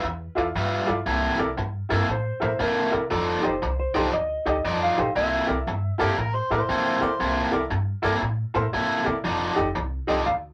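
Rollicking and laid-back, this short blues excerpt swings easily in 4/4 and sounds like a rough rehearsal-room take in a snug, booth-like space. An overdriven electric guitar sits up front with a bright, picked riff, while a woody, thumpy upright bass plucks the low end and a brilliant upright piano adds polished accompaniment from 0.4 seconds. A dark, clean lap steel guitar carries the slide melody until 6.0 seconds, when an amplified, gritty harmonica takes a brief jazz-style solo line with light vibrato, tongue slaps and scooped notes. The lap steel returns for a fleeting moment near the end, while across the excerpt the harmony moves through dominant thirteenth chords built on G, C and F.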